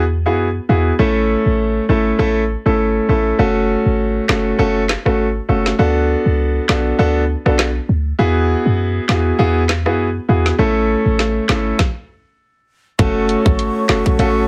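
A light reverb and a heavily compressed, radio-like sound frame this tough, hypnotic dancehall excerpt, which is cut from a longer piece and moves with a swung sixteenth-note feel. A clear, vintage grand piano sits up front from the start, its smooth accompaniment pumping against a sidechain, while a clean 808-style bass supplies deep, boomy sine tones with a fast attack that decay mellowly underneath. At 4.3 seconds an electronic island pop drum kit enters, with a tight kick, woody snare, warm hi-hat, rim clicks and handclaps pressed close to the listener. The harmony cycles through Eadd9, A, F#m and D6 before the groove halts in a stop at 11.8 seconds. At 13.0 seconds, as the chords return to F#m, a breathy large flute ensemble slips in behind everything else with straight-toned, crisply attacked sustained chords that also pump with the sidechain.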